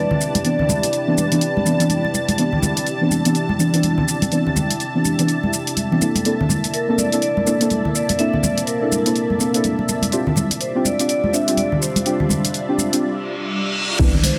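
The deep mellow chord stab sits at the heart of this soulful, sunny deep house excerpt at 124 BPM in C major, its soft, full-bodied tone carrying chorus and digital delay and pumping against the sidechain throughout. Beneath it sit a silky vintage string machine treated with phaser and ensemble chorus, a bright, evolving analog string pad, and a moody ambient pad with built-in reverb in the background, all breathing with the same sidechain pulse as the harmony moves from Cmaj9 to Bbmaj9#11 and then G7sus4. A metallic, ringing vibraphone played with medium mallets and set off with digital delay states a brief melody at the start, then returns at 6.7 seconds. Ringing, high-tuned congas under soft hands and an overdriven deep house kit with crash, hi-hat and shaker keep a swung 16th-note groove. A reverse cymbal and downlifter sweep in up front from 13.2 seconds, and at 14.0 seconds a hollow, bouncy FM bass and an overdriven electronic kick arrive together, all set in a lush hall reverb.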